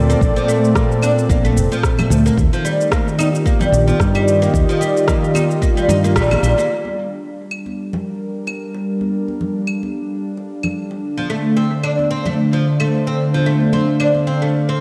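Organic downtempo with a mystical, hypnotic pull, cut from a longer piece and carried by a swung groove. A smooth, detuned sawtooth pad sits up front holding sustained chords, shaded by chorus and sidechain pumping, while a bright, plectrum-plucked oud with doubled strings spins arpeggios through an analog delay. A dark, round fretless bass with a hollow-body tone anchors the low end beside a deep, tape-warm electronic kick, as layered electronic shaker, rim click and claves and very quiet, hard-handed congas and bongos fill in the rhythm. After a band accent at 6.2 seconds, the bass, kick and oud drop away, and a filter sweep runs across the pad from 6.7 seconds to the end, with the oud returning at 11.2 seconds. The mix is dreamy and soaked in a lush hall reverb.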